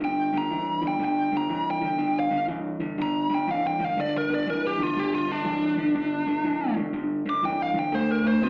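Rollicking and soulful, this brief live blues excerpt swings at 121 BPM in 4/4, with a bright, biting, overdriven lead guitar soloing up front over a slightly broken-up, lo-fi riff from an electric guitar through a small old amp, both guitars carrying slapback echo and both playing the full 8.5 seconds, all heard through a club PA with light reverb.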